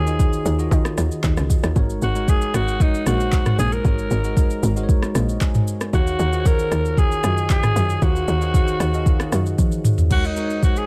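Set in a digital ambience with an overdriven, up-front drum kit, this late-night, soulful amapiano excerpt at 115 BPM in Eb dorian pairs a raspy, growling alto saxophone melody with vibrato and tape echo against a bell-like tine electric piano with subtle chorus that plays a fill at 4.9 seconds, while a tight, punchy log drum bass drops out at 9.6 seconds as the soft-kicked kit of handclaps, shaker, rim clicks and toms moves into a fill over Ebm11 and Ab9sus4 chords.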